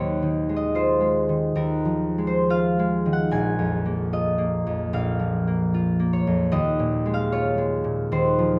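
Classical solo harp piece at 74 BPM in 4/4, wistful and gentle, with a rubato feel, heard in an excerpt cut from a longer work. The concert harp plays alone throughout, fingerpicked and ringing, up front and close, spanning Bb1 to Ab5 over chords moving from Dbadd9/Eb to Bbm7 at 3.3 seconds and Eb9sus4 at 6.5 seconds. Light reverb and detailed microphones frame its acoustic tone.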